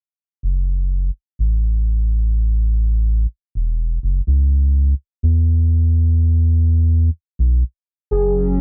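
A deep, round analog bass carries this melancholic, cerebral IDM excerpt from 0.4 seconds, sitting up front with a dark, sustained tone that blends square, sine and triangle waves with a wave-folded edge. The track moves at 125 BPM in a straight 4/4 feel in F# minor, tuned to A4 = 437 Hz, and the harmony shifts from F#m to C#m. After a brief stop at 7.6 seconds, a velvety synth lead and a hollow pad both arrive at 8.1 seconds, just as this cut-short fragment of a longer piece ends. The lead holds a single sustained G#4 with smooth, detuned sawtooth unison, vibrato and chorus, while the flute-like, airy pad spreads mellow chords beneath it with a slow attack, ring modulation and a noise layer. The whole recording has a dry, gritty hardware character, with transformer saturation and cassette tape colouring its digital ambience.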